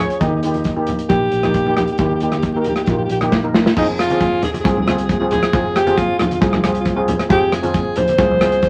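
Calypso with a driving, tense mood, cut from a longer piece: a breathy, whispered alto saxophone sings the intimate pop-style melody up front with vibrato and scooped notes over shimmering, metallic steel pan, a round, foam-muted fingered electric bass in the background, a dark, smooth studio drum kit with a tight kick and rim clicks, and soft-handed congas, with a drum fill from 3.3 to 3.8 seconds leading into a new section, all under moderate reverb and a layer of vinyl crackle.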